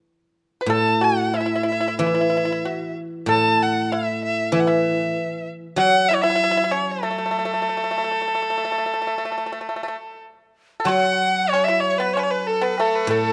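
A rich, up-front erhu carries the melody with smooth vibrato and portamento in this festive, pastoral Chinese traditional chamber piece, a freely flowing fragment cut from a longer work, over a silvery, ringing guzheng accompaniment and a dry, percussive fingerpicked pipa second line, joined at 10.9 seconds by an airy bamboo dizi with a buzzing membrane and a background woodblock, all captured by close, detailed microphones with light reverb.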